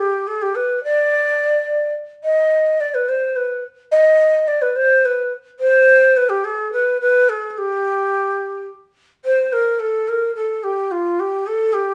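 In a straight 6/8 lilt at 72 dotted-quarter beats per minute, a lone end-blown ney carries this stately, passionate Persian fragment in G dastgah homayun, tuned to A4 = 442 Hz. Its breathy, reedy cane tone is tongued with a straight, expressive voice, ranging from F4 to Eb5 and sitting up front in a moderate studio reverb. A new section opens at 9.2 seconds, and the solo continues until the cut at 11.9 seconds.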